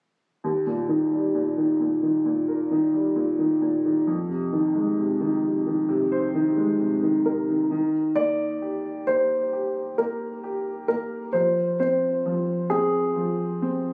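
In a straight 4/4 at a slow 66 BPM, this tender, heartfelt pop fragment, cut from a longer piece, settles into Eb major. An upright piano plays the accompaniment from 0.4 seconds, its woody, boxy tone sitting up front as it ranges from Eb2 to C5. The harmony moves from Eb to Fm7, then back to Eb and on to Fm. At 7.3 seconds a baby grand piano enters with the melody between Ab4 and D5, and a new section begins shortly after. The baby grand is dark and mellow, with short sustain, audible action noise and a touch of delay that keep it intimate and close. The sound was captured on a phone in the room, with studio ambience, light reverb and compression.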